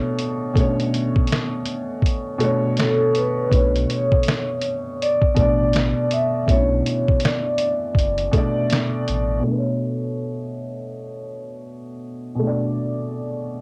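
Swung sixteenths in 4/4 carry this melancholic, nostalgic lo-fi hip hop fragment, cut from a longer piece, with a compressed, pitched-down sampler drum kit of thumpy kick, fat snare, hi-hat and finger snaps sitting up front from 0.2 seconds. A felt-muted upright piano, soft and dark with audible action noise and a vintage cassette-tape haze, opens on a Bm9 chord and plays alone after the bass drops out at 9.4 seconds. From 2.8 seconds a close-miked vibraphone adds a metallic, ringing melody with slow motor vibrato, and at 3.5 seconds a deep sine-and-triangle sub bass with octave enters beneath it, all set in a moderate booth ambience on a home cassette recording.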